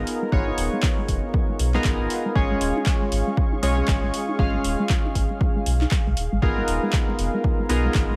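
Deep house at 118 BPM in 4/4, with a 60% swing on the sixteenths, this smooth, deep excerpt sits in G# dorian and moves from G#m69 to C# at 2.4 seconds before returning to G#m69 at 6.4 seconds. An overdriven electronic kick drum sits up front from 0.3 seconds, its punchy analog thump re-recorded in a large room, while a punchy, overdriven analog drum machine adds handclaps and hi-hat from 0.1 seconds. Beneath them a full sub bass with an added octave blends sine and triangle tones, pumping with the sidechain. Bright, ring-modulated keys play chorused stabs built from detuned square and sawtooth waves, with 12-bit sampler grit, dub echo and a filter sweep, and a smooth, slow-attack pad holds sustained chords in the background. A soft, dark pluck with a short decay and a cassette-tape warble plays arpeggios under a filter sweep from 0.2 seconds, trailing dub echo through a dry mix laced with prominent vinyl crackle.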